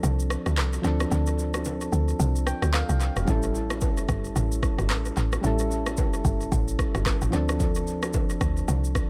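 Smooth and sultry, this afrobeats excerpt in D minor sways at 111 BPM with a swung sixteenth-note feel, opening on a break where soft, round electric-piano-like synth keys with chorus and tape echo play a fill from 2.2 to 3.3 seconds over a woody, punchy log drum bass, an overdriven electronic drum kit of deep kick, handclaps, rim click and shaker, and very quiet bright congas and bongos, all set in an echo-heavy digital ambience as the chords move from Dm7 to A7 and back.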